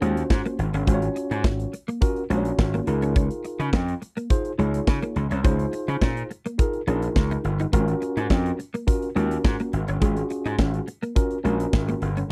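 A gritty, overdriven slap bass sits up front, bright and direct, driving this smooth, feel-good early-eighties boogie funk cut from a longer piece. A worn, slightly out-of-tune tine electric piano with light overdrive plays the accompaniment, while a clean, compressed electric guitar picks a riff through ensemble chorus over a polished, airy acoustic kit with a punchy kick, medium-tuned snare and hi-hat. The dry, close 1970s-style studio sound carries the harmony from Ab13sus4 to Db69 at 2.9 seconds and back at 7.7 seconds.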